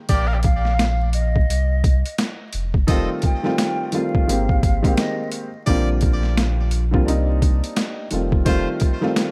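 A swung boom-bap hip hop groove at 86 BPM in 4/4 rides on a gritty, overdriven sampler-style drum kit with a thumpy kick and high-tuned snare, over a round, deep sub bass, giving this soulful Bb major excerpt its weight beneath vinyl crackle and small-room ambience. Bright trumpet section stabs with delay play over a progression through Bb5, Cm, F7 and Abmaj7, while a breathy jazz flute with vibrato, chiff and delay carries the melody from 0.4 to 5.3 seconds. A dark, woody upright piano with audible action noise enters at 2.9 seconds to accompany through the close.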